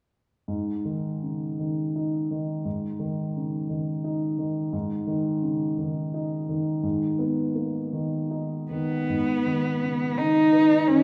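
A warm concert grand piano with a deep bass opens this mysterious, wistful excerpt of impressionist classical music in a flexible, rubato triple metre, accompanying alone until a rich, focused bowed cello with vibrato and a smooth top enters up front at 8.7 seconds to carry the melody through a new section beginning at 9.1 seconds, both instruments bathed in the wet reverb of a recital hall.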